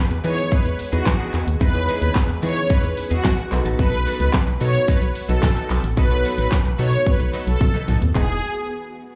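A punchy, fat-snared pop drum kit with handclaps, shaker and toms drives this euphoric, carefree dance-pop drop, joined by a hollow, organ-like FM bass pumping up front, a bright supersaw pad melody with slapback echo, a tine electric piano, a twangy twelve-string electric guitar riff with lush chorus in the background, a very quiet ethereal pad and faint jingly tambourine, all heard through a club PA as Emaj7 moves to B7, with a drum fill at 7.6 seconds.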